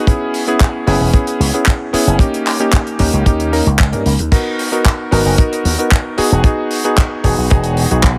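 A straight 4/4 nu-disco groove at 113 BPM in G# minor is set by a dry, tight, up-front acoustic kick and a dry, damped 70s drum kit with crash cymbal, handclaps and hi-hat, while a bright, punchy slap bass with an envelope filter and tube saturation enters at 0.9 seconds, and a warm, vintage electric grand piano with a clangy low end comps through F#7sus4, D#7, G#m7 and Emaj7 with sidechain pumping and delay, giving this short excerpt from a longer piece a groovy, sleek feel in a studio reverb.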